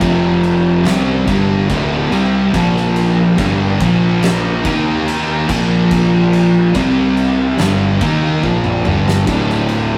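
A rough rehearsal-room recording with tube saturation and a moderate stone room reverb gives this stoner and doom metal passage a raw, heavy feel, cut from a longer piece. Three picked electric guitars carry the riff throughout. A sludgy overdriven guitar sits double-tracked and up front, a compressed fuzz guitar adds a warm tone, and a thick fuzz guitar sits in the background. Beneath them, a fingered electric bass, direct and amped with overdriven fuzz, fills the low end. An oversized, low-tuned acoustic kit pumps in a big room, saturated and gritty, with a boomy kick, fat snare, dark cymbals and toms, and it plays a fill from 8.4 to 9.3 seconds. The chords move through F5, D5, Bb5, Eb5 and C5 in a straight 4/4, and the mood stays sludgy and brooding.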